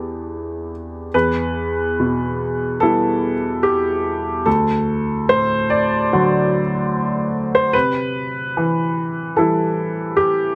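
A clear, worn baby grand piano plays alone and up front with open, long-sustaining tone in light reverb, moving unhurriedly at a rubato 73 BPM in E minor through Em7, Em, D and C across the D2 to D5 range, giving this short neoclassical minimalist fragment of a longer piece a wistful, reflective mood.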